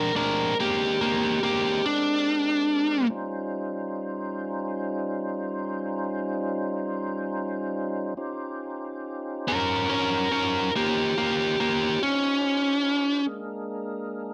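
Set in a light reverb, this short fragment of slow 12/8 blues at 47 BPM swaggers and rollicks as a biting, overdriven electric lead guitar picks an up-front melody over a fat tonewheel organ, whose sustained chords carry key click, chorus vibrato, slow rotary swirl and light grit, moving from Bb13 to Eb13 at 3.1 seconds and landing on Bb7 at 13.3 seconds, where the organ rings alone after the guitar stops at 13.2 seconds.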